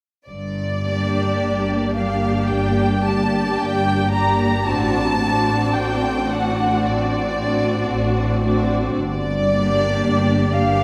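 Flexible rubato phrasing in a slow four-beat pulse carries this elegiac, yearning romantic movement for string orchestra, a fragment cut from a longer piece. At 0.3 s the lush, up-front first violins take the melody high above bowed cellos and clear, focused double basses, while dark violas join at 0.8 s and a close, expressive second violin line follows at 0.9 s. The vibrato-rich ensemble blooms into a vast cathedral reverb as the harmony moves from a minor chord to a dominant seventh and back.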